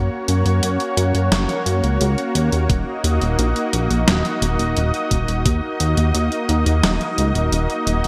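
A glossy, mellow synth bass sits up front in this cinematic, nocturnal synthwave excerpt. A thick, warbling detuned pad sustains chords that pump against the beat, moving from Gb to Eb minor. A clean 12-bit drum machine enters at 0.3 seconds with hi-hat and a medium-tuned snare treated with gated reverb, while a thumpy, tape-warm kick appears only from 2.7 to 5.6 seconds, all within a bright 1980s-style digital production.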